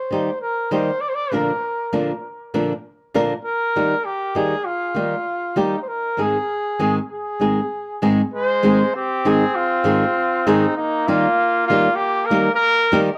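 Proud and festive, this mariachi excerpt in Ab major moves at a straight 99 BPM in 4/4, with an up-front, fingerpicked flamenco guitar on fresh strings supporting a warm, roomy lead trumpet that carries light vibrato and an analog delay, while a mellow, punchy, vintage-toned second trumpet joins at 8.3 s for a low supporting line until 12.9 s, all in a moderate studio reverb.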